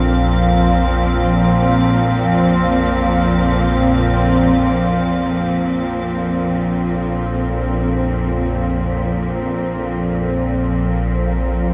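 Dark and unsettling, this fragment of a longer dark ambient drone rests on a detuned, sine-toned organ-like drone up front, thickened by ensemble chorus. Above it sits a muted, veiled cello section, bowed con sordino with light vibrato and treated with shimmer reverb, sustaining a Bbsus2 chord, while a barely audible bronze metallophone rings out soft arpeggios with shimmering beats. An icy, crystalline glass pad hovers quietly on a high F until 5.2 seconds, and a huge, wet ambient reverb with a 9.1-second decay surrounds the whole sound.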